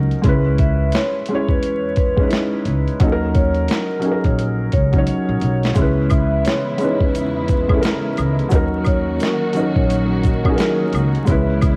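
Lo-fi hip hop at 87 BPM with a swung 16th feel and a hazy, reflective mood: a soft, felt-muted upright piano with audible action noise and a woody pizzicato upright bass sit under a gritty, pitched-down boom bap kit with a thumpy kick and high-tuned snare, while a mellow soft-mallet vibraphone carries the melody with slow motor vibrato and tape echo, and after a drum fill at 5.1 seconds a close, dry tube shaker and woodblock and a dark, distant bowed string section join near 5.7 seconds, the harmony moving between C#m7 and D#m7 inside a home-cassette sound with light reverb and vinyl crackle.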